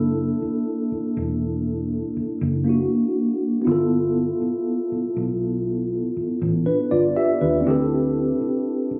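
Contemporary R&B at a slow 60 BPM in 4/4 with a straight feel, this brief excerpt cut from a longer piece sits in G major and carries a smooth, romantic mood. A mellow tine electric piano provides the accompaniment throughout, clean and up front, heard through its built-in speakers, ranging from A#3 to E5. Beneath it, a vintage muted fingered electric bass plays from E1 to Eb2 with a dark, round, amped tone, its foam-muted notes sitting up front in the mix. The harmony moves from F#7alt to G13 at 3.7 seconds and settles on D9sus4 at 7.7 seconds. A lush hall reverb with a three-second tail surrounds the sound, which carries the character of a phone recording made in the room, with added studio reverb and compression.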